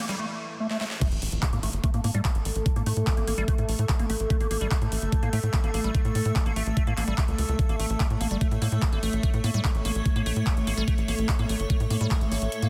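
Psychedelic trance at 146 BPM in A major, hypnotic and intense, cut from a longer piece. It opens on a brief build-up with a drum fill, a background riser and a filter sweep on the squelchy, resonant acid bass, then drops at 1.0 seconds with an overdriven, knocking kick up front and a punchy sawtooth sequencer bass driving beneath a huge snare, metallic hats, handclaps and crash. Over this, a wave-folded drone with moving overtones and a blurred, evolving granular pad pump against the kick, the acid riff trailing phaser and dub echo, before the kick drops out at 12.5 seconds in a dense, heavily limited mix.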